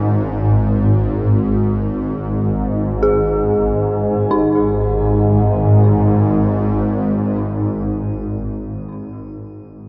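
The piece drifts in free time, a vast and ominous stretch of dark ambient drone cut from a longer work. Up front, a swarming drone sits low, between G#1 and G#2, its detuned sine voices stacked in unison, warbling with a vintage, granular grain and a slow attack that lets each tone bloom and hang on a long release. Above it, a dark detuned synth bell plays eerie arpeggios between C#4 and G#4, its inharmonic FM strikes decaying into a mellow haze of chorus, tape echo and shimmer reverb. The harmony moves from a suspended G#sus4 chord to a bare G#5 at 4.3 seconds. The drone stops at 8.3 seconds, leaving the bell alone until 9.9 seconds, all set inside a cavernous cathedral reverb whose tail hangs for seconds.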